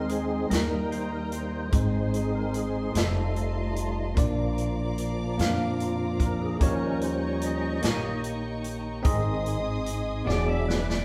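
A percussive tonewheel organ, fat and lightly overdriven with key click, chorus vibrato and a slow rotary speaker, takes the solo through this reverent, hopeful slow gospel passage in 6/8 at 49 BPM in Ab major, backed by a bell-like electric piano, a soft, bowed sul tasto string section, woody pizzicato upright bass and an up-front swinging drum kit with a punchy kick that enters at 0.1 s and closes with a fill at 10.3 s, the band playing live together in a moderate stone room.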